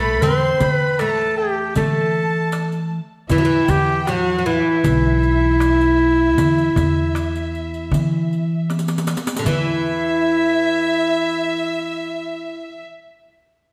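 Set in a wet recital hall, this stately, passionate Turkish makam ensemble piece in E makam ussak moves at 78 BPM in a straight 4/4, cut from a longer work. A warm, smooth-topped clarinet carries the melody up front in classical style, over a woody, plectrum-plucked fretless oud, a rich, bowed chamber violin section with vibrato, and a thumpy pizzicato upright bass. A crisp metal-shell darbuka and a close, dry riq with dark jingles play from 0.2 to 9.8 seconds, with a drum fill at 8.7 seconds leading into a new section at 9.5 seconds.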